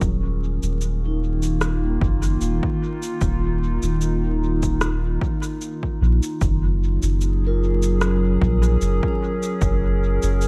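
Ambient dub at a slow 75 BPM in 4/4 with a light swing, hazy and deep, shifting from an Eb7(no3) chord to Gbmaj9 at 6.4 s in this fragment of a longer piece. A warbling, nostalgic tape-like pad sits up front with detuned, lo-fi sustained chords bathed in chorus, phaser and reverb, while a round, soft sub bass anchors the low end and a vibraphone played with soft mallets rings out airy, metallic arpeggios through dub echo. An overdriven, punchy electronic kick drives the groove until 9.8 s alongside an echoing electronic cabasa and rim click, all set in an echo-heavy mix dusted with vinyl crackle.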